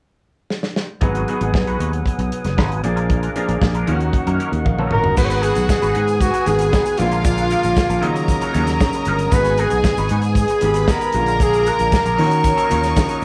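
A dark, dry soul drum kit opens with a fill at 0.5 s before this sultry, danceable disco excerpt settles in at 1.0 s with a growly, punchy fingered electric bass up front, a twangy clean electric guitar with wah and chorus and a lightly overdriven tonewheel organ with slow rotary speaker tucked in the background, and an intimate baby grand piano with audible action noise that adds a fill before a scooped, roomy flugelhorn takes the melody at 4.9 s, soon joined by a smooth bowed studio violin section and a grainy egg shaker.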